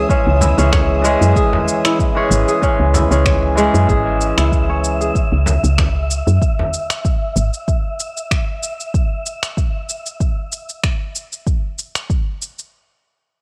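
Dry and gritty on cassette tape, this earthy organic downtempo cut from a longer piece sits in C# minor at 95 BPM with a lightly swung 16th feel, where a deep up-front electronic kick, electronic shaker and finger snaps share studio reverb over a large, saturated frame drum played with hard hands. A round, dark FM bass pumps underneath, a crisp fingerpicked kora rings out arpeggios roughened by 12-bit sampler grit and tape echo, and a barky tine electric piano through a combo amp pumps and echoes before a filter sweep from 2.6 to 5.2 seconds, while a very quiet, lush bowed string section with vibrato holds chords until 2.6 seconds and an airy, breathy wind-like noise layer lingers to 10.2 seconds.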